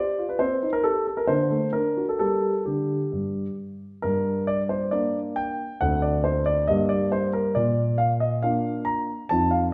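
A dark, mellow concert grand piano plays alone and up front, opening a short passage cut from a longer classical-period sonatina in G minor at 136 BPM in 4/4, shaped with an elegant, dramatic rubato and tuned to A4 = 441 Hz. The piano spans from a deep bass D2 up to Bb5, moving through Am7b5/C and D7 to settle on Gm at 2.2 seconds, then turns to a new section at 4.0 seconds that passes through D5 and Gm before arriving on Bb. The instrument sits in a wet recital hall whose 1.3-second reverb lends the playing a sense of space.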